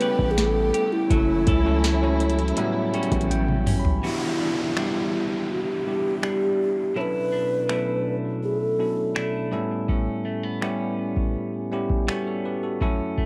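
A booming analog drum machine sets a straight, unhurried groove, its deep kick, crisp snare, metallic hats, finger snaps and toms sounding tape-warm and up front, with a short drum fill leading into the second section. This moody, sensual slice of contemporary R&B, cut from a longer piece, leans on jazzy extended chords, moving from A9 and F#m7 into Em9 and Bm11. A breathy clay ocarina carries the melody with vibrato and a crisp attack, close-miked and trailed by tape echo, until 9.5 seconds. A bright, bell-like tine electric piano plays the accompaniment throughout and adds a fill, while a compressed, picked clean electric guitar plays arpeggios throughout. In the opening section a lush bowed string section holds sustained chords and a boomy 808-style bass with a sine body and fast attack sits up front, both stopping at 4.0 seconds, where an electronic downlifter sweeps in. Light reverb and a lo-fi cassette sheen give the whole a hazy, homespun intimacy.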